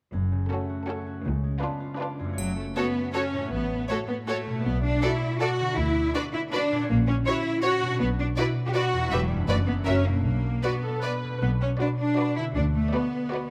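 A playful, whimsical cinematic film cue in three, mischievous and magical in mood, cut from a longer piece. Up-front fingerpicked concert harp arpeggios ring brightly over a lush cello section and a smooth, even double bass section. A rich violin section carries the close, lightly vibrato melody with a soft attack, while a focused, distant second violin line and a smooth viola accompaniment fill in beneath it. A close, dry triangle touches in only from 2.4 to 3.1 s, and a moderate scoring-stage reverb surrounds the ensemble.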